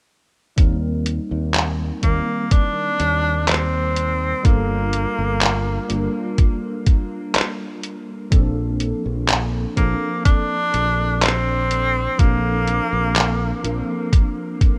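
A slow, straight 4/4 pulse at 62 BPM opens this woozy, dreamy vaporwave excerpt, driven by a thumpy, sampler-style electronic kick drum sitting up front alongside a detuned 8-bit drum machine supplying handclaps and hi-hat, both re-recorded in a small room. Beneath them, a fingered electric bass adds a bright, growly line through tube saturation, while a tine electric piano, clean and heard as if through built-in speakers, carries the chords with analog chorus and analog delay. The harmony moves from Eb6 to Gm9 at 4.5 seconds and on to Bbmaj9 at 8.3 seconds. Entering at 2.0 seconds, a clear tenor saxophone takes the solo melody in a jazz style, with vibrato, a soft attack and scooped notes, trailed by tape echo. The mix has a rough home-demo character with little reverb, and the bass drops out at 13.8 seconds as this fragment of a longer piece draws to its close.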